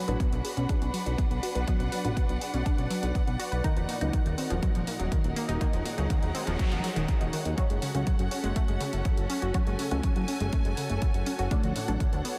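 Melodic techno with a cinematic, driving mood, cut from a longer piece: a punchy, tape-touched kick sits up front beside a fat, detuned sawtooth bass, with a layered electronic hi-hat that has the air of a large room. Bright, round pluck arpeggios with chorus and dub echo evolve under a filter sweep, while a rich bowed string section holds sustained chords with vibrato, and a muted, dark dub chord stab with phaser and a cloudy granular pad blur in the background, each of these pumping to the sidechain along with the bass. An echo-heavy mix with light reverb carries the whole passage, and a quiet electronic noise sweep passes through from the back between 6.2 and 7.6 seconds.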